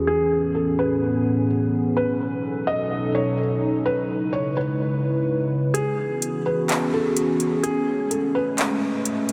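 A dark analog pad stands out first, its detuned, sub-octave chords sustaining from the opening through 9.3 seconds, colored by chorus, phaser and a low-pass filter with a slow attack and long release. This is atmospheric cloud-rap in E major at 127 BPM in 4/4 with a half-time feel, floating and dreamy in mood, cut from a longer piece. A felt-muted upright piano carries the melody between G#4 and D#5, its mellow, intimate tone softened by thick felt, a low-pass filter and diffuse ambient delay, with audible action noise close up. At 5.7 seconds a smooth, electronic R&B drum kit arrives with handclaps and metallic hi-hats, the kick held back. The harmony moves through Amaj9, B7 and C#m7 before settling on E69 and returning to Amaj9, all within a mix soaked in a huge reverb with a 5.2-second tail.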